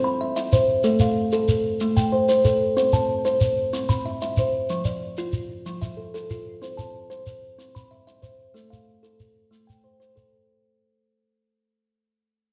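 Southern African traditional music built on a rippling, hypnotic mbira-style interlocking cycle at 124 BPM in a straight 12/8, where a woody, mellow kalimba plays up-front fingertip arpeggios over C, Am and F while a grainy, close shekere joins at 0.4 s, all bathed in a wet recital-hall reverb within a dark, warm production as this fragment of a longer piece fades out across its 10.5 seconds.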